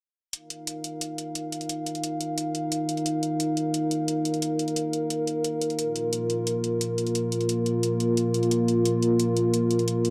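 At 0.3 seconds, a dark analog synth pad and an electronic hi-hat begin together in this tense, futuristic excerpt of dark technical drum and bass, moving at 176 BPM in a straight 4/4. The pad sits up front with sustained chords, its nasal, detuned tone built from square, sawtooth and triangle waves over a sub octave, shaped by a slow attack, long release and a chorus effect. A filter sweep runs across the pad for its whole length, while the harmony moves from Ebsus2 to Bb5 at 5.8 seconds. The hi-hat is bright, layered and re-recorded in a small room, sitting well beneath the pad in the balance. A plate reverb soaks the mix in a dreamy wash, and both parts play through to 10.1 seconds.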